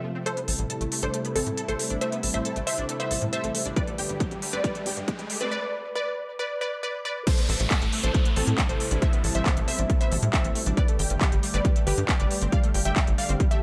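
Emotional and driving, this uplifting trance excerpt opens on a swell as a detuned unison pluck melody with dub echo, an airy, phaser-washed pad, a round analog pluck arpeggio in the background, a tight, wave-folded sequencer bass and a smooth-hatted techno kit with handclaps and crash build together, before an overdriven, up-front kick arrives at 3.8 seconds with a drum fill and the drop lands at 7.3 seconds, every melodic part breathing with sidechain pumping over Am7 and Gsus2 chords.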